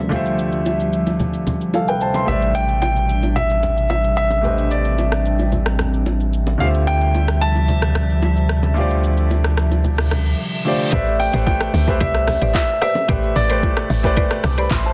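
Late-night and deep, this amapiano cut at 111 BPM in A minor opens on a warm grand piano and a hollow, airy pad with chorus and sidechain pumping over an electronic afro-pop kit (deep kick, metallic hi-hat, handclaps, rim click and shaker) and background congas and bongos, adds a clear, intimate piano melody with tape echo and a full sine sub bass with octave at 2.3 seconds, then rises through an up-front reverse cymbal from 10.1 seconds into a drop at 10.9 seconds, where a punchy woody log drum bass and a round, mellow mallet-like synth pluck with chorus and tape echo enter, all within a dense, heavily limited modern master with digital ambience.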